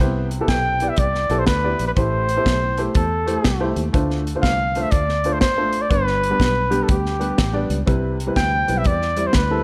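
A swung eighth-note pulse at 122 BPM in 4/4 drives this jubilant, hopeful uptempo gospel passage in C major, cut from a longer piece. A woody upright piano with audible action noise and a slightly detuned, intimate character comps the changes from the first moment, moving through Cmaj7, Am7, Dm7 and G before returning to Cmaj7. Beneath it, a fingered electric bass sounds dark and round, foam-muted and direct from the amp. The acoustic drum kit enters at 0.3 seconds, up front and polished, with a punchy kick, a high-tuned snare and hi-hat in an airy small-room sound. At 0.5 seconds a mellow jazz-style trumpet takes the solo melody, forceful and up front, with scooped notes and a smooth top end. A light reverb gives the whole performance a sense of space.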